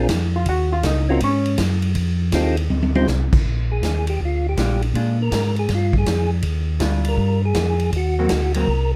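A dark, lightly reverberant soul jazz organ trio swings at 161 BPM in Bb major, with a round tonewheel organ bass showing key click and a percussive tonewheel organ melody turning on a slow rotary speaker, a punchy, natural big-room drum kit with crash, ride, hi-hat, snare and toms, and a clean, picked hollow-body jazz guitar that solos at first before the organ takes a soulful solo from 3.5 seconds after a short drum fill.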